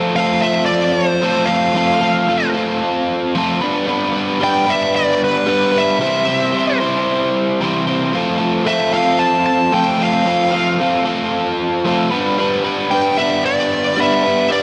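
Rock at 113 BPM in a straight 4/4, this sunny, confident clip runs about 14.6 seconds and comes from a longer piece. An overdriven electric guitar drives the riff from the first beat, sitting up front with a picked, double-tracked, compressed sound and a slapback echo, spanning C3 to C5. At 0.2 seconds a smooth overdriven lead guitar joins with a picked melody in the higher register between B4 and A5, and both guitars carry a bright edge. The harmony moves through F, G, C, then back to F and G. A lush hall reverb with a 3.0-second tail gives the whole mix a big arena sound.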